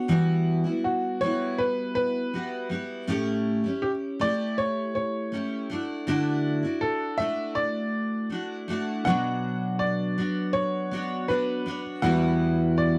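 A straight, unhurried 4/4 pulse at 80 BPM carries this heartfelt, carefree acoustic pop excerpt. From the start, a double-tracked, picked steel-string dreadnought guitar sits up front with a full-bodied tone, moving through Emadd9, A7 and Dadd9. At 0.8 seconds an upright piano takes the melody, its intimate, woody voice close at hand, with the action noise audible under the notes. Around 9.0 seconds a clear, polished baby grand piano joins in the background as accompaniment, as the harmony turns to Bmadd9 before settling back on Emadd9. The sound is dry and close in the manner of a 1970s studio, with a modest booth ambience around the players.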